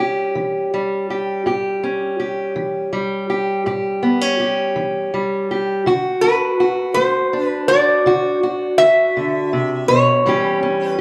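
A metal-body resonator slide guitar carries the melody in this short acoustic country blues cut, entering at 6.2 seconds with a bright, nasal, metallic voice played with fingerpicks and sitting up front in the mix. Beneath it, a fingerpicked steel-string parlour guitar holds down the accompaniment from the very start, its tone dark and boxy, also placed close and present. The mood is soulful and swaggering, moving at a slow 55 BPM in a straight-feeling 12/8, rooted in A mixolydian. The harmony moves from A7 to D and back to A7. A moderate spring reverb and a small room ambience give the duo an intimate, slightly roomy sound, and the passage is clearly lifted from a longer performance.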